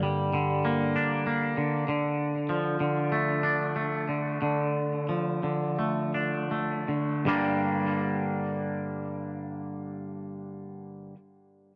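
The recording sounds dark and warm, with soft, rolled-off highs, light reverb and the ambience of a small room. This short rock fragment is cut from a longer piece and feels melancholic yet cathartic, set in G minor and 4/4 with a straight feel at 78-97 BPM. A single twangy electric guitar sits up front, playing clean, fingered arpeggios between G2 and D4, colored by lush chorus and digital delay. The harmony moves from G minor to D minor at 1.9 seconds, where the tempo begins slowing. At 7.3 seconds a new section opens back on G minor, and the guitar rings on until 11.2 seconds.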